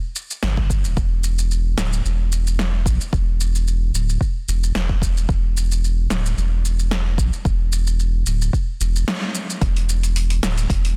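A layered, overdriven deep house drum kit of hi-hat, shaker and punchy snare opens this short, hypnotic and mystical organic downtempo excerpt at 111 BPM with a light 16th-note swing in E minor pentatonic, soon joined by a round, sine-like sub bass sitting up front between D1 and B1 and a deep, tape-toned electronic kick, all in a dry, dense, heavily limited mix, with a band accent at 9.1 seconds before a new section begins at 9.6 seconds.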